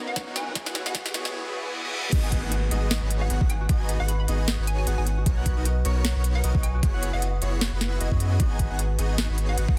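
A dense, heavily limited mix with light reverb carries this dreamy, emotional future bass excerpt in G# minor at 153 BPM with a swung half-time feel, where a mellow, ringing concert harp arpeggiates under a filter sweep, a hollow, bouncy square pluck sings the melody in the background, and a riser, reverse cymbal and downlifter build the tension into the drop and trail off by 5.3 seconds. From the outset, huge, bright supersaw chords and a deep, thick saturated sub bass pump against a knocking, overdriven electronic kick drum and a trap kit of sharp snare, crisp hats and crash cymbal, with the bass and drums up front. A soft, airy lead with vibrato joins at the drop at 2.1 seconds, adding gentle arpeggios over chords moving from Bmaj9 through F#9sus4 to G#m7.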